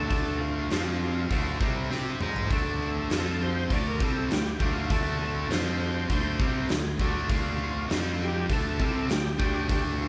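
A bright, double-tracked distorted electric guitar drives this brooding, swaggering classic rock excerpt in D minor at 100 BPM, its picked riff moving between D and F power chords up front alongside a huge arena drum kit with a punchy kick and medium-tuned snare that comes in at 0.1 seconds and plays a fill at 1.9 seconds. Underneath, a dark, round fuzz bass holds the low end while a thick, gritty tonewheel organ carries the melody through chorus vibrato and a slow rotary speaker. The band sounds like it is playing live in one large studio room with a moderate reverb.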